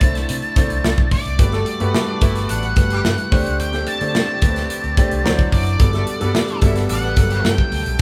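Polished 1980s jazz-funk pop in G major moves at 109 BPM in a straight 4/4, upbeat and urban in mood, in this excerpt cut from a longer piece. A dark, fuzz-distorted electric guitar carries the picked melody, while a grand piano with audible action noise supplies intimate accompaniment over a round, foam-muted fingered electric bass. Up front, a modern studio drum kit drives the groove with a tight kick, a medium-tuned snare and hi-hat, its sound airy and polished. Behind them, a string section holds soft-attack, floating bowed chords, and a distant horn section with light vibrato adds a second line from 1.5 to 7.4 seconds. The harmony glides through colourful extended chords such as C69, Gmaj9, D7sus4 and D9, heard as a band playing live in one room with a moderate, large studio reverb.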